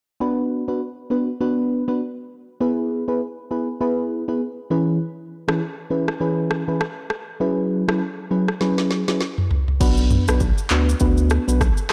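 A mellow FM electric piano opens at 0.2 s, its round, dark tone colored by chorus and phaser as it moves through Bm, E, C#m7/E and F#7sus4 in a smooth, sultry afrobeats groove at 100 BPM with a swung sixteenth feel in B dorian. At 5.5 s an electronic afro-pop kit joins up front, with a deep kick, a woody snare given soft clipping, rim clicks, shaker, handclaps, toms and crash, and it plays a drum fill before a thick, saturated sine sub bass arrives at 9.8 s as the music returns to Bm. The overdriven, blown-out recording sits in light digital reverb, and this brief cut ends shortly after.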